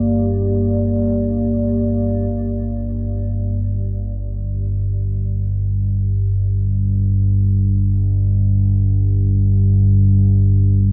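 Unfolding in free time, this dark ambient drone is cut from a longer piece and carries a dark, desolate mood. A deep rumbling drone sits up front from 0.0 s to 10.9 s, ranging from G1 to G2, its ominous, warbling vintage tone blending triangle and sawtooth waves with slow attack, long release, built-in reverb and a subtle chorus, while a filter sweep moves across it during the opening 2.3 seconds. Over the same opening stretch, a dark analog pad holds sustained chords between Bb3 and D5 on a Bb6 harmony, its moody, detuned mix of square, sawtooth and triangle waves with a sub octave shaded by chorus and phaser. Once the pad stops at 2.3 s, the harmony drops away and the drone carries on alone until the end. A huge ambient reverb with an 8.2 s decay soaks the dreamy mix, lending the low rumble a cavernous, brooding weight.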